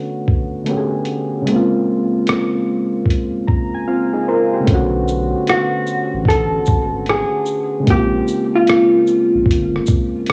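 Recorded on cassette at home with light reverb and a digital ambience, this melancholic, reflective lo-fi hip hop fragment swings gently as soft, round electric-piano-like synth keys with a warbling chorus open under a filter sweep, joined almost at once by a muffled, pitched-down sampler-style drum kit with a thumpy kick, hi-hat, rim click and shaker. The drums are muted at 3.9 seconds, and at 4.7 seconds a deep, tube-saturated sub bass enters beneath the minor-ninth chords. At 5.5 seconds a dark, clean hollow-body jazz guitar takes up the picked melody up front, filtered and tinged with cassette tape.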